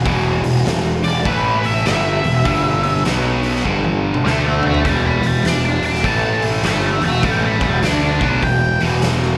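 Blues rock power trio with a southern rock edge, this smoky, gritty excerpt swings at 100 BPM in E minor, with a double-tracked, crunchy overdriven guitar riff carrying slapback echo, a growly, up-front fuzz bass, a saturated garage drum kit with a punchy kick and medium-tuned snare that rolls through a fill at 3.7 seconds, and a dark octave-fuzz lead guitar with wah and slapback echo singing high from 1.0 seconds, all heard like a live club gig through the venue's PA.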